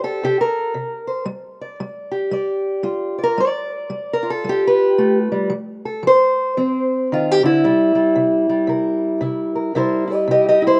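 Acoustic country blues with a gritty, laid-back mood, this short excerpt from a longer piece features a lone fingerpicked steel-string parlour guitar, dark and boxy and up front in a rough home demo mix with light small-room reverb, swinging at 113 BPM in C mixolydian over C7, G7 and F7 changes before taking a brief solo turn at 9.8 seconds.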